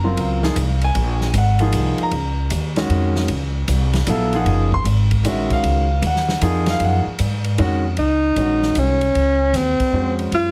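Modal jazz in a swung 3/4 at 154 BPM, open and hypnotic on a single Gb lydian chord, with an intimate grand piano whose action noise is audible, a woody pizzicato upright bass up front and an airy big-band kit with dark cymbals setting the groove before a mellow, breathy tenor saxophone with vibrato and scooped notes enters at 8.0 seconds, all under light reverb and a heavily compressed radio sound in this short cut from a longer piece.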